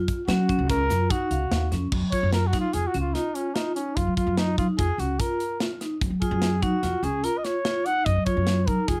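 Intricate and bright, this progressive instrumental in 5/4 sets ringing hard-mallet vibraphone arpeggios over a woody, thumpy pizzicato upright bass and a tight, gritty metal drum kit of crash, hi-hat, kick and snare, with a grainy egg shaker heard very quietly only until 1.1 s and a dark, smooth classical-style trumpet that enters at 0.3 s and takes an up-front solo from 1.9 s, captured with close, detailed microphones and light reverb.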